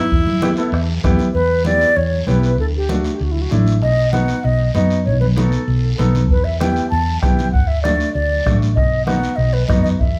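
Cumbia with a driving, fiery character, moving at 194 BPM in a straight 4/4 in E dorian, this excerpt is cut from a longer piece. A bright, forceful tenor saxophone opens with a brief solo on E4, roomy and punchy with vibrato, before a breathy, mellow concert flute takes the melody at 1.3 seconds, expressive and crisp in attack, with vibrato and rolled-off highs. Beneath them, a brilliant, woody upright piano supplies open, long-sustained accompaniment through Em, D and B7 changes, while a dark, round hollow-body electric bass sits up front with an amped, punchy tone. The percussion blends a close, soft-beater bombo that drops out and returns at 6.3 seconds, thick-skinned congas struck with hard hands in the background, and a raspy, band-limited vintage guiro. A large studio reverb places the ensemble further back in the room.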